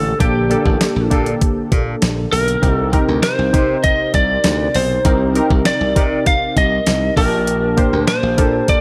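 A lightly driven electric lead guitar, picked and compressed with a slightly broken-up edge, carries the melody up front in this nostalgic, glossy 1980s-style pop passage at 99 BPM, cut from a longer piece. Round, detuned sawtooth analog keys with chorus and a filter sweep fill in the harmony over Gmadd9, Cm7 and Gmadd9/Bb, while a bright, punchy slap bass anchors the low end. A thumpy, overdriven 12-bit drum machine enters at 0.2 seconds with kick, medium-tuned snare, hi-hat and tambourine, framed by light reverb and digital ambience.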